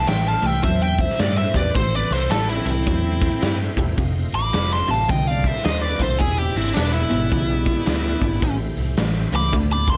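A dark, distorted lead guitar sits up front carrying the melody, shadowed in the background by a second lo-fi, overdriven lead line from a small cranked amp, in this smoky, brooding swung blues rock excerpt with a southern rock edge. A double-tracked hollow-body guitar churns out a bright, overdriven riff behind them, while a growly, punchy picked bass drives the groove alongside an up-front raw garage drum kit with a punchy kick and rolled-off top. A very quiet, gritty tonewheel organ holds thick sustained chords through a slow rotary speaker, all set in a small room ambience over a progression moving from Am7 through F7 and E7#9 back to Am7.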